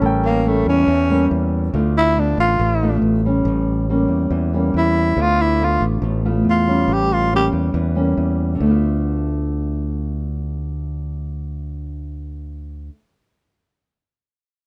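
A straight 4/4 bossa nova groove at 140 BPM in D dorian carries this intimate, smooth fragment cut from a longer piece, where a breathy, growling tenor saxophone solos up front from 0.3 to 7.5 seconds over a dark, thumb-plucked nylon-string guitar, a punchy fingered electric bass and a brief polished concert grand piano in the background that stops at 1.7 seconds, all captured close and dry as A7b9 and Dm6 alternate.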